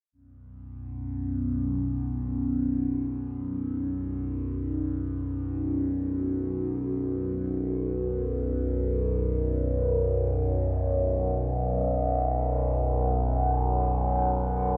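Ambient in free time, desolate and cavernous, this excerpt is cut from a longer piece and given over entirely to a solo drone that sounds from 0.6 to 14.8 seconds in a low register. Its resonant tone blends sawtooth and sine with moving overtones, a slow attack and a long release, shaded by chorus, phaser, tape echo and its own reverb while sitting up front. A huge, wet ambient reverb surrounds it, and the dark sound holds nothing above 7.8 kHz.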